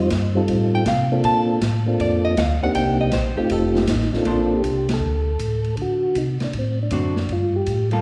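Two tonewheel organs open this swinging, bluesy soul jazz organ trio excerpt: a soft, flute-like melody voice with second-harmonic percussion over a round, mellow bass line, both up front with chorus vibrato and a slow rotary speaker. An acoustic kit with a boomy kick and rolled-off cymbals joins almost at once, and a dark, clean hollow-body electric guitar enters at 0.7 seconds, taking a fingered solo through 4.3 seconds before settling into accompaniment. The band hits an accent at 4.8 seconds, and a lush, reverberant hall surrounds the group.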